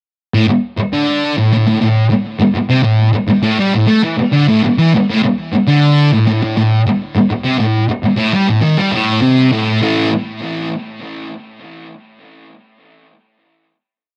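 A thick, warm, double-tracked electric fuzz guitar opens this short, swaggering and raw rock piece at 0.3 seconds, picking an up-front single-note riff between A2 and A3 over an A5 chord at a straight 101 BPM in 4/4, tuned to A4 = 438 Hz; its distortion carries a cassette-tape grit and tape echo, and it moves to a final chord at 9.8 seconds in a dry home recording made on cassette.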